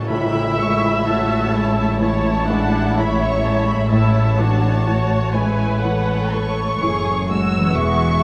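A warm, vintage-toned concert grand piano underpins this tender, moving orchestral film cue, cut from a longer piece, as veiled con sordino violins carry a lush vibrato melody over a second violin line, dark muted violas and cellos, warm muted double basses, a bright ringing harp in the background and a close tam-tam that sounds with an ensemble accent at 0.1 seconds and stops by 3.9 seconds, all in a rubato 4/4 flow within a reverberant recital hall.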